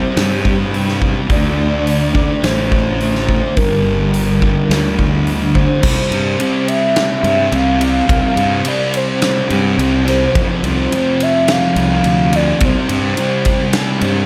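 A thick, double-tracked fuzz guitar and a pure, round sine lead open this wistful, blissful excerpt of shoegaze-leaning dream pop rock, with overdriven fingered bass and a huge arena drum kit joining at 0.2 seconds. The picked guitar riff sits up front, distorted and shimmering with analog chorus, while the bass adds a fuzzy, amped growl beneath it. The kit sounds acoustic and natural in a big room, with a punchy kick, a medium-tuned snare, hi-hat, ride and crash cymbals. Above it all, the soft, sustained sine melody carries vibrato, chorus, phaser and a slapback echo for a dreamy, hovering quality. The piece moves at a straight 106 BPM in 4/4, tuned to A4 = 443 Hz. Its harmony passes through C5, D5 and Gm before shifting at 5.8 seconds onto Csus4, then F5 and back to C5, all framed by light reverb and a small-room ambience.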